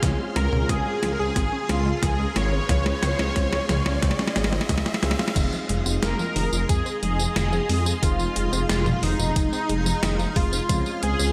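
Opening on a drum fill from a gated 80s digital drum machine, punched up front over a thumpy, tape-toned electronic kick, this moody, cinematic synthwave fragment layers a thick, detuned saw bass, lush string-machine chords, round analog-pluck arpeggios and boxy grand-piano stabs with audible action noise alongside a background riser that runs until 5.4 seconds, while a bold, wave-folded unison lead with vibrato carries the melody from 0.4 seconds over Dbmaj7 and Fm7 harmony.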